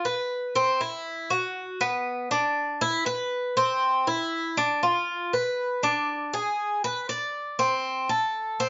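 Latin dance music at 119 BPM in a straight 4/4, with a danceable, warm mood, taken from a longer piece. A solo Cuban tres sits up front for the full 8.7 seconds, its picked double strings sounding bright and metallic, with some strings doubled at the octave and a slapback echo, ranging from B3 to D5. Light reverb surrounds the instrument, the high end is trimmed above 7.5 kHz, and the phrase moves into a new section at 7.6 seconds.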